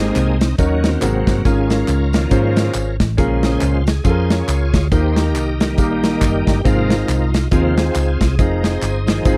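Hopeful and uplifting, this short passage cut from a longer uptempo gospel piece moves at 138 BPM in 4/4 with a swung eighth-note feel, set in Ab major. A bright, shouting tonewheel organ takes the solo across the whole 9.4 seconds while also holding sustained chords, its sound shaped by a slow rotary speaker and chorus vibrato. Beneath it, a clear, intimate grand piano accompanies with audible action noise, and a dark, round hollow-body short-scale electric bass, played with the fingers, sits punchy and up front. At 0.2 s a polished modern drum kit enters with hi-hat, a tight kick and a medium-tuned snare, joined by quieter group handclaps, egg shaker and tambourine. The harmony moves from Abmaj7 through Ebm7, Ab9, Db6/Ab, Bbm7 and Eb to Ab6, landing on Fm7. The dry, close recording has a 1970s studio character with little reverb.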